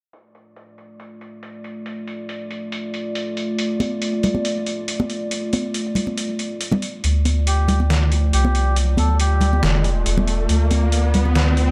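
Set in a dark digital ambience, this heavy, brooding slice of deep dubstep at 139 BPM in a half-time D minor groove opens on a moody, detuned analog pad with chorus and gritty, pitched-down sampler-style hi-hat and snare under a filter sweep, then adds close, dry conga hands with dub echo at 3.8 seconds before a build-up at 7.0 seconds brings in a round, up-front saturated sub bass, followed by a reedy, breathy melodica at 7.5 seconds passing through a filter sweep and dub echo, and an electronic riser from 8.2 seconds.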